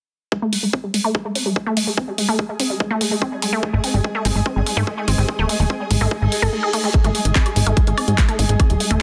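Intense and psychedelic, this 145 BPM psychedelic trance excerpt in Ab major drives forward in a straight 4/4 from a longer piece. A lush, detuned unison pluck carries the riff from 0.3 seconds with sidechain pumping, delay and a filter sweep, while an overdriven, tight electronic kick sits up front alongside a layered kit of bright hi-hats, handclaps and woodblock. A cloudy, evolving granular pad drifts in at 1.5 seconds, blurred by its own reverb and pumping under the sidechain, and a punchy, funky analog bass with ring modulation enters at 3.7 seconds. A squelchy, resonant blip pluck with a phaser adds a very quiet second line in the middle, and a reverse cymbal rises in the background as the kick drops out briefly before the next section begins at 6.9 seconds. The sound is dense and heavily limited, set in a light digital ambience.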